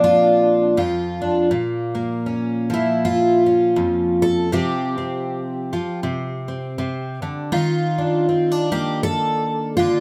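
A picked twelve-string acoustic guitar carries this short folk passage by itself, its octave-doubled strings giving a shimmering, full-bodied tone that sits up front in the sound. The mood is peaceful and gentle, moving at 80 BPM in 4/4 with a lightly swung eighth-note feel. Across the 10-second span the harmony moves from Bbadd9 to Bbm, then through Csus4 and C5 before settling on Eb5. The guitar covers a range from F2 up to A4, and it is tuned slightly low, with A4 at 439 Hz. A light reverb adds a touch of space around this fragment, which is cut from a longer piece.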